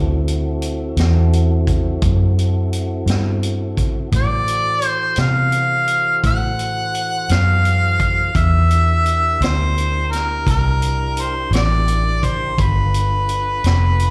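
A rollicking, gritty slow blues in a straight 12/8 opens with a tonewheel organ holding sustained chords through a slow rotary speaker, with light overdrive and key click, over a dark, round, foam-muted fingered electric bass; a vintage drum kit with a high-tuned snare and punchy kick joins at 0.3 seconds, and at 4.2 seconds an overdriven harmonica enters up front with slapback echo, light vibrato and scooped notes, all heard as a live club gig through the venue's PA.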